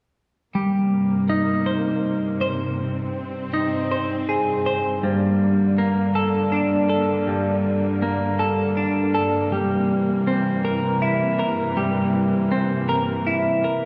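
Brooding and cinematic, this short excerpt from a longer rock piece moves at a slow 54 BPM in a straight 6/8. A studio string section enters at 0.5 seconds with sustained, bowed chords that sound lush and focused, their vibrato clear and close, sitting between G2 and C4. A moment later a twelve-string electric guitar joins with picked arpeggios ranging from G2 to C5, its clean, compressed tone bright and twangy and placed up front, somewhat louder than the strings. The harmony shifts from Abadd9/G to Gmadd9 at 5.0 seconds and then to C7/G at 9.5 seconds, all over a shared G in the bass. A recital hall reverb with a long decay surrounds the parts with the air of a church or concert hall, and both play together through to 13.9 seconds.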